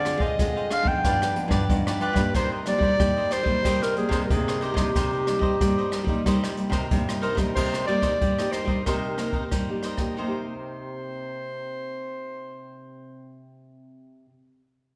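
A clear, classical-style clarinet sings the solo melody up front in this bittersweet, nostalgic samba and choro passage in C minor at 92 BPM, moving over a Dm7b5 to G7b13 to Cm7 progression. Beneath it, a bright, crisply picked cavaquinho plays alongside two fingerpicked classical nylon-string guitars: one full-bodied with fresh strings and audible finger squeak carries the accompaniment, while a warm one holds the bass. Dark cymbals, a boomy kick and brushes from an up-front jazz kit play until 10.1 seconds, and the clarinet carries on to 13.5 seconds, all set in a wet recital hall reverb.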